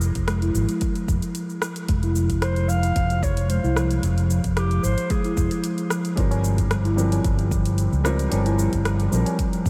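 A round, up-front fretless electric bass anchors this meditative, mystical organic downtempo excerpt at 112 BPM in F harmonic minor, its lush chorus and sidechain pumping breathing under a pure, ringing steel tongue drum arpeggio struck with firm rubber mallets and trailed by delay, while a layered deep house kit of cabasa, dark hi-hat and rim click sits with a deep electronic kick in studio reverb. A distant, dark clarinet carries the melody from 2.4 to 5.6 seconds, and at 6.2 seconds the harmony moves from Fm to Gm7 as a soft, felt-muted upright piano with audible action noise and a low-tuned tabla in the background join. The whole mix is dreamy and soaked in a huge ambient reverb.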